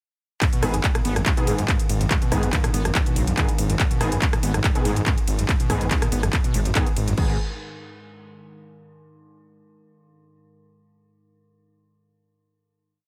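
Dark and industrial, this short piece of driving peak-time techno runs at 142 BPM in G# minor, launching straight into a drop at 0.4 seconds with a heavy four-on-the-floor electronic kick, a techno kit of smooth programmed hats, claps, rim clicks, ride and crash, and a thick, beating detuned saw bass pumping off the beat beneath a squelchy, screaming acid line that sits in the background, distorted, chorused and tape-coloured, with accents and slides. Sparse, aggressive rave stabs move one chord shape in parallel through chorus, reverb and dub echo, while a very quiet, eerie FM drone with a metallic, inharmonic shimmer hovers underneath from 1.0 seconds. The mix stays dry before closing on a final chord at 7.2 seconds.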